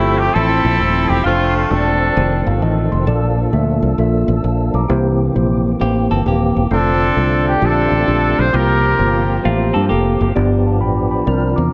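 Soulful and uplifting, this short gospel excerpt swings along at 132 BPM in F major, moving through rich chords such as Fmaj7, Bbmaj7 and C7sus4 before landing on G7. A tight, vintage-flavored horn section with light vibrato carries the melody up front in two phrases, the second arriving at 6.7 seconds, its notes trailed by tape echo, while a mellow tine electric piano comps throughout and slips in a fill at 2.2 seconds. Beneath them, a punchy, foam-muted fingered bass anchors the groove, a fat, clicky tonewheel organ holds sustained chords in the background through a slow rotary speaker and chorus vibrato, and a clean, compressed electric guitar adds brief phaser-tinged second lines, all set in light reverb.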